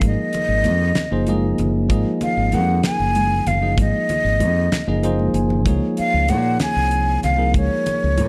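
Funky and slick, this short cut from a longer electric jazz fusion piece moves at 64 BPM in a straight 6/8, centred on Ab mixolydian. A breathy, mellow silver concert flute carries the melody up front, its close-miked, tongued, straight tone a little unsteady and trailed by a slapback echo. A bell-like tine electric piano supplies bright, clean accompaniment through its built-in speakers, while a fingered electric bass sits up front with a direct, amped sound. The damped 70s drum kit is dry, airy and polished, with a fat snare, tight kick and hi-hat, and high-tuned congas with a thick skin and hard hands stay in the background in a small-room sound. The harmony rests on Ab13 before the electric piano plays a fill from 4.7 s and the drums add their own fill from 5.2 s, leading into Dbmaj7 at 5.7 s, all set in a moderate large studio reverb.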